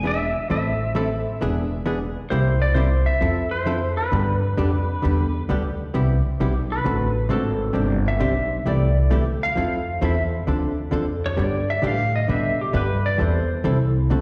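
A swung 132 BPM groove in 4/4 drives this cheerful, down-home western swing excerpt in C major, where a woody, thumpy upright bass and a dark hollow-body jazz guitar with slapback echo carry the chords beneath a bright, twangy lap steel melody, also with slapback echo, while an electric slide guitar solo comes in at 5.9 seconds, all heard as a live gig through the venue's PA with recital hall reverb.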